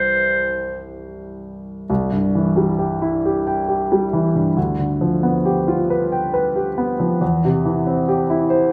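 Romantic classical duo in a solemn, melancholic 3/4 with rubato, where a bright, soft-attacked vintage clarinet sings a brief solo melody up front only until 0.9 s, while a warm, smooth grand piano carries the accompaniment through to 8.7 s across a moderate stage reverb captured by close, detailed microphones, in this fragment cut from a longer piece.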